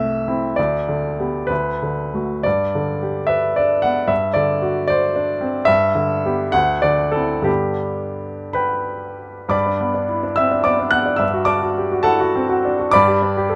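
The music moves in 6/8 with a flexible, rubato feel, stretching and easing the dotted-quarter pulse as it goes. This is a romantic character piece for solo piano, hopeful and warm in mood, cut from a longer work. A clear baby grand carries everything, its polished, present tone sitting up front and spanning from C2 up to F#6. The harmony circles home to G again and again, passing through an Am/C, a Dsus2 and D7 over a G bass before settling. The opening phrase returns at 9.5 seconds, and the short passage ends at 13.6 seconds. A light reverb lends the instrument a gentle sense of space.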